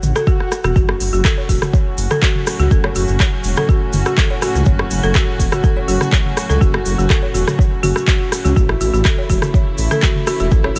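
A straight 4/4 afro house groove at 123 BPM in F# minor drives this hypnotic excerpt, built on a deep, up-front electronic kick, a crisp afro-pop kit of handclaps, hi-hat, rim click and toms in small room ambience, and a grainy tube shaker, with a dark, rumbling detuned saw bass pumping against the kick over an F#m chord. After a background electronic swell and a drum fill, the drop lands at 0.8 seconds as a gut-toned string section enters with sustained, lightly vibrato chords. From 0.2 seconds on, a woody folk marimba struck with hard mallets spins pumping arpeggios trailed by dub echo, all in a dry, close sound.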